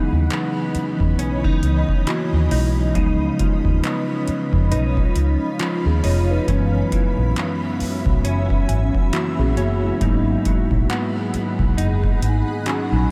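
Longing and late-night, this contemporary R&B fragment at 68 BPM with a swung sixteenth feel drifts through C#m9, C#9, F#7sus4 and G#m7, as a mellow tine electric piano and a cloudy, detuned granular pad with sidechain pumping cushion chorus-and-delay arpeggios from a clean, direct-recorded electric guitar, while a dark, foam-muted vintage bass and a booming analog drum machine of deep kick, metallic hi-hat and handclaps sit up front, and a soft, round, very quiet pluck enters at 4.7 s, all in light reverb.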